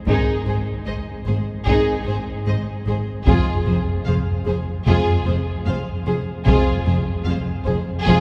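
In a steady, straight four-beat pulse, this triumphant and adventurous cinematic excerpt sets a lush, vibrato-rich violin melody over a smooth second violin line, a distant viola accompaniment, mellow background French horns and very quiet vintage-toned trombones holding sustained chords, a focused double bass and close, even cello section anchoring the bass, and heavy-stick taiko drums in the background, all moving from Ab to Fm at 3.3 seconds inside a cavernous cathedral reverb.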